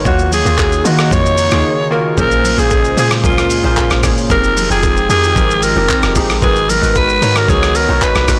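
Amapiano at 113 BPM in Bb minor, this hypnotic, soulful passage is cut from a longer piece and moves through Ebm7, Bbm7, Fm7 and Abm7 chords. A breathy, raspy alto saxophone carries the melody up front from 0.1 seconds, bright and punchy with vibrato and scooped notes, trailed by a digital delay. Beneath it, a deep log drum bass thumps round and dark with percussive notes that strike with a fast attack and then decay, while analog keys comp in a detuned, wave-folded tone treated with chorus and a filter sweep. A hollow, flute-like pad holds sustained chords softly in the background, and a dusty, sampler-style drum kit of thumpy kick, handclaps, rim click, hi-hat and shaker sits up front with a gritty, tape-warm, compressed sound, joined by very quiet hand-played congas and bongos. A brief break arrives at 1.6 seconds, and the whole recording is blown-out and overdriven with light reverb.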